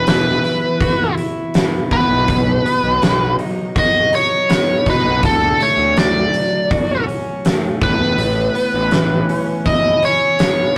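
Anthemic and cathartic, this quiet-loud alternative rock excerpt moves at 81 BPM in a straight 4/4, cycling through Esus2, B, Dmaj7 and Aadd9. A biting, overdriven lead guitar carries the melody up front over bright, twangy twelve-string arpeggios and a fuzzed, overdriven picked bass that drops out at 9.2 seconds. A big acoustic kit with a fat snare, punchy kick and rolled-off top drives it all, captured in a rough rehearsal-room sound with tube saturation and a moderate small-room reverb.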